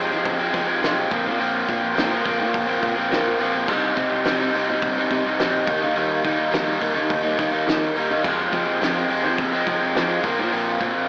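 A straight 4/4 pulse drives this moody, restless indie rock excerpt, where a bright, double-tracked overdriven guitar riff sits up front with a cassette tape coloring, a growly picked bass sits in the background, and a loose, distant acoustic kit with a fat snare, tight kick and dark, rolled-off cymbals, also on cassette tape, enters at 0.3 seconds, the whole take carrying light studio reverb and a home-cassette, AM-radio sound as the chords move through Fm, Bbsus2, Cm and Eb.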